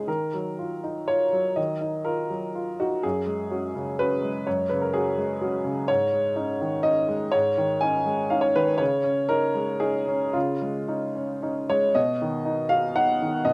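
Melancholic and wistful, this short piece of neoclassical minimalist piano from a longer work features a solo upright piano with a woody, vintage tone and long sustain, played up front in a rubato 3/4 and recorded dry outdoors, drifting through Ebmadd9, Gbsus2, Absus4 and Dbadd9 before settling onto B at 12.0 seconds.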